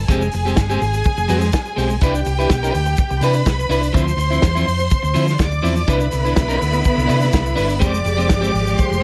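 A lush, vibrato-rich violin section with expressive portamento and a dark, round, punchy hollow-body bass set off this glamorous, danceable disco groove in C major at 124 BPM, joined at once by a slightly broken-up picked electric guitar, a distant, roomy soul drum kit with a tight kick and rolled-off top, and a grainy shaker in the background, while a clear, focused string section adds sustained chords from 5.9 seconds as the harmony cycles through Fmadd9, Cmaj9 and Dm9 under a plate-reverb sheen.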